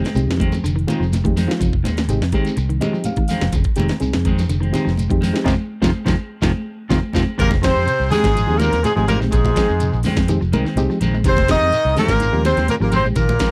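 Funky and defiant, this afrobeat excerpt in F minor moves at 124 BPM over an Fm7 chord, with a worn, reedy electric piano, picked clean guitars playing arpeggios and spring-reverbed, slapback-echoed stabs, compressed high-tuned congas, a grainy shekere, a round, dark fingered bass and an up-front electronic drum kit with knocking kick and cracking snare driving a dry, close 1970s-style sound, until a clear, tight horn section takes the melody at 7.4 seconds, backed by a raspy, very quiet baritone saxophone and a nasal, straight-muted trombone.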